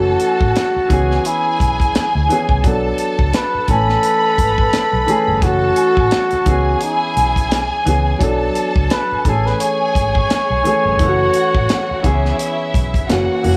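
Silky and bittersweet, this lush 1970s-style soul excerpt has a breathy, mellow flugelhorn carrying the melody up front with light vibrato, while a distant, bowed violin section adds an expressive second line over minor-seventh and major-seventh chords. A boxy concert grand piano supplies accompaniment with deep bass, a round, foam-muted electric bass sits dark and punchy underneath, and a tight funk drum kit with a high-tuned snare joins at 0.2 seconds, all moving over a swung sixteenth-note feel. Light reverb and small room ambience frame the sound, and the flugelhorn drops out at 13.0 seconds.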